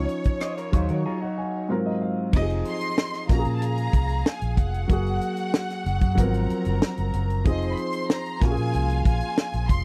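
A dry, close recording with a 1970s studio character frames this warm soul passage. A rich, expressive violin section with vibrato carries the melody over an intimate concert grand piano, whose action noise and deep bass sit up front, alongside a round, punchy, foam-muted electric bass and a tight funk kit with a high-tuned snare, rim clicks and crash cymbal. A lo-fi, slightly broken-up electric guitar plays a brief picked riff from 0.4 to 1.7 seconds while the piano adds a fill, and at 2.3 seconds a soft-attacked, bowed string section enters with a smooth sul tasto second line as the harmony moves through Fm7, Bbm7, Gbadd9 and Ab13.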